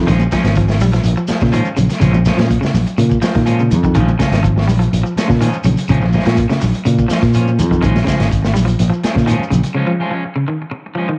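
Funky and intense, this afrobeat excerpt rides a straight groove over a single Bbm7 chord, with a lo-fi home-cassette character and a light, small-room ambience. A round, punchy fingered electric bass sits up front with a dark, direct-amped tone. A crunchy breakbeat kit drives underneath, its punchy kick, medium-tuned snare and hi-hat sounding saturated and gritty with a rolled-off top. Very quiet, high-tuned congas ring with hard hands, while a grainy, mellow shekere stays in the background. Two slightly broken-up, twangy electric guitars carry cassette-tape coloring: one picks brilliant, scooped arpeggios set back in the mix, the other adds warm stabs. By 9.8 s the rhythm section has dropped out for a break, leaving the guitars alone until about 11.2 s.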